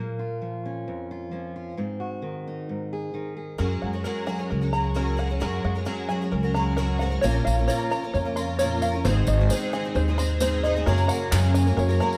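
A large studio room with a moderate reverb surrounds this wistful, yearning indie folk excerpt at 132 BPM in 4/4, tuned to A4 = 435 Hz, cycling through Bbm, Ab and Gbadd9. An up-front, fingerpicked steel-string acoustic guitar opens alone until 3.6 seconds, when a build-up begins: a bright, shimmering, octave-doubled twelve-string with ensemble chorus joins alongside a mellow, plunky open-back banjo playing arpeggios and a woody, thumpy pizzicato upright bass on gut strings. At 7.2 seconds a dark upright piano and a jingly, close tambourine fill out the arrangement, and a crisp, saturated group handclap sounds briefly in the background near the end.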